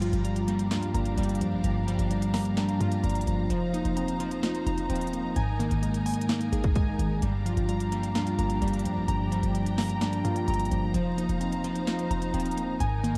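A mellow tine electric piano, a lush bowed string section, glassy digital keys with chorus and delay, a short, punchy 808-style bass and a trap kit with a hard-clipped kick, sharp snare and crisp hats all sound together from the start of this menacing, brooding hip hop and trap piece at 129 BPM in a half-time feel. Set in G phrygian, the harmony moves from Gm7 through F7sus4 and Absus2 before returning, with the clean electric piano up front while the smooth, vibrato-laden strings sit lower in the mix beneath the decaying, filter-swept arpeggios of the keys. The dark production adds light reverb, vinyl crackle and lossy compression artefacts across this 13.2-second cut from a longer track.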